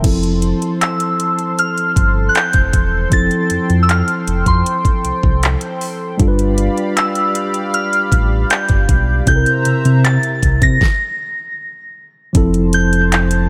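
A dry mix carries this tender, romantic contemporary R&B excerpt in F major at 78 BPM, where a mellow tine electric piano and a shimmering, detuned pulse-width pad hold Fmaj7, G7 and C7 chords over a deep sine sub bass and an electronic kit of knocking kick, fat snare, handclaps and metallic hats, while a soft, pure FM synth bell with chorus and tape echo carries the melody from 0.8 seconds, before a stop at 10.8 seconds gives way to a return to Fmaj7 at 12.3 seconds.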